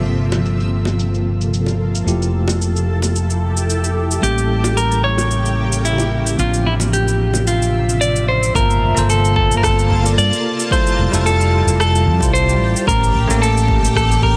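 Wistful and smooth, this sunset chillout excerpt at 111 BPM in G dorian sets a bell-like tine electric piano with tape echo and a shimmering, ethereal ambient pad over a dark, round fretless bass, electronic cabasa and rim click, and low-tuned bongos until 7.4 s, while a clean, picked electric guitar carries the melody from 4.2 s and an overdriven, punchy electronic kick joins at 8.6 s, all in a dense, heavily limited modern master.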